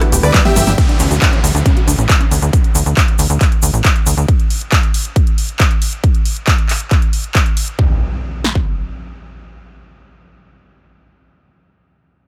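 This short uplifting trance excerpt at 137 BPM in 4/4 opens on a G chord. A very quiet, thick, warbling pad holds sustained chords, while a detuned sawtooth pluck spins arpeggios in the background with dub echo and sidechain pumping. A layered big-room kit of handclaps, hi-hat, rim click and punchy snare plays alongside, its hats pumping against the sidechain. A tight, nasal sequencer bass drives underneath, up front and pumping, as a grainy, bright egg shaker sits further back and a full-bodied, airy supersaw lead flashes a brief euphoric melody with dub echo. A second electronic kit brings in the kick drum and a huge snare with a fill that leads to 0.8 s, where the harmony drops away, a filter sweep moves across the arpeggio sound and an electronic downlifter arrives. At 7.8 s the first kit stops and a new section begins with another downlifter and impact, all set in a digital ambience.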